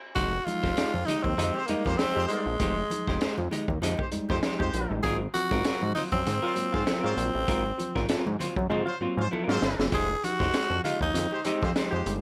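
Funk at 98 BPM with a swung sixteenth feel, this energetic excerpt sets a raspy, up-front tenor saxophone melody over a clean hollow-body jazz guitar, worn and lightly overdriven electric piano stabs, a fat detuned analog bass, a punchy, gritty breakbeat kit with a high-tuned snare, soft-handed ringing congas and a distant horn section entering at 1.5 seconds, moving from Fm9 to Ab13 and back, with a drum fill at 8.7 seconds, all in a small, lightly reverberant room.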